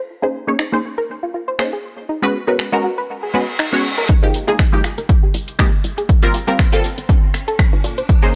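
Dry, gritty hardware character with transformer saturation and a cassette-tape grain, set in a digital ambience, frames this deep, warm deep house cut from a longer piece, moving at 120 BPM in 4/4 with a light 16th-note swing. A muted yet bright filtered dub chord stab sits up front, its detuned, wave-folded tone coloured by phaser, tape echo and sidechain pumping, while a soft, round, mellow pluck spins arpeggios alongside it with chorus and echo. Both synths carry filter sweeps through the opening half as the chords move from Bbm11 to Abm11, and overdriven finger snaps and hi-hat from a layered electronic kit tick along in a studio ambience. A reverse cymbal and riser arrive at 3.3 s, leading to 4.1 s, where a punchy, overdriven electronic kick lands up front and a hollow, dark, organ-like FM bass joins in the background with tube saturation and pumping. From there the build-up runs through Fm11 and Gm11 before circling back to Bbm11.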